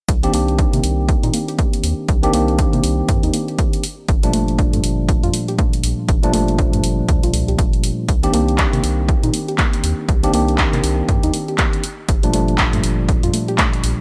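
A clean, tine electric piano sits up front with stabs through a combo amp, colored by tape echo and sidechain pumping, over a round, nasal analog bass with tube saturation and a punchy electronic kick in this late-night deep house excerpt at 120 BPM in C dorian, swung at 59% on the 16ths. An analog drum machine adds handclaps and hi-hat, while a soft, gentle pluck plays chorused, dark arpeggios in the background, pumping alongside the bass and piano. The harmony alternates between Cm9 and Gm9, with the Gm9 arriving at 3.8 seconds, and the mix is dry and dark.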